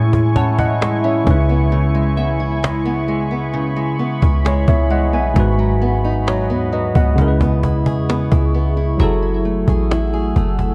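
At a slow, straight 66 BPM in 4/4, a cajon played with soft hands sets the pulse, its woody, close and dry tone carrying faint snares, while a boomy 808-style bass sits up front beneath it. This is moody, late-night contemporary R&B in C# minor, cut from a longer piece, with chords moving from Amaj7 through C#m7 and G#m7 before arriving on F#m9 for the closing section. A slightly out-of-tune tine electric piano carries the accompaniment up front, sounding as if heard through built-in speakers, and a fingerpicked, ladder-braced acoustic guitar with old strings adds dark, boxy arpeggios. A deep ambient pad holds sustained sawtooth chords with a slow attack, chorus and built-in reverb, while a glassy, crystalline wavetable pluck glints faintly in the background with chorus and delay, appearing from 0.4 to 3.3 seconds and again at 9.0 seconds. Light reverb and small room ambience surround the mix, and an aged cassette-tape quality gives the recording a warbling pitch drift.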